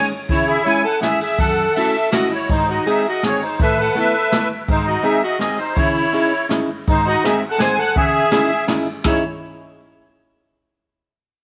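Musette waltz in C# minor at 164 BPM with a rubato, whirling and nostalgic feel, where a reedy, shimmering musette accordion carries the melody up front with slapback echo, a clear soprano saxophone with light vibrato adds a distant second line, a dark, clean hollow-body archtop guitar picks the accompaniment, and a jazz kit played with brushes, boomy kick and dark cymbals enters at 0.3 seconds, all set in moderate spring reverb in this excerpt cut from a longer piece.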